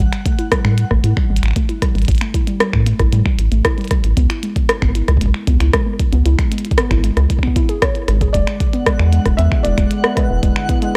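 This melancholic, intricate IDM passage, cut from a longer piece at 115 BPM, opens with warbling, dusty plucked arpeggios steeped in chorus, cassette tape and tape echo over an up-front, rubbery, nasal square bass with tube saturation, a deep electronic kick and a glitchy kit of finger snaps, clicky hi-hats and rim clicks, as the chords move from A5 through C#m to E7 before a soft, felt-muted upright piano melody with audible action noise arrives at 8.3 seconds, joined at 8.8 seconds by a swirling phased analog pad carrying 12-bit sampler grit and a twinkling granular texture, all within a dry, hardware-recorded sound.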